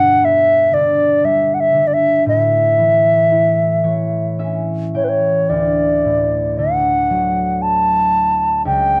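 A home recording on cassette with light reverb frames this brief, wistful and nostalgic fragment of Celtic folk in a rubato three, where a close-miked wooden baroque flute carries the melody up front with a pure, expressive tone, crisp attack and vibrato over a warm, ringing, thumb-plucked concert harp that adds a fill from 3.3 to 5.5 seconds as the chords move from G through A to D.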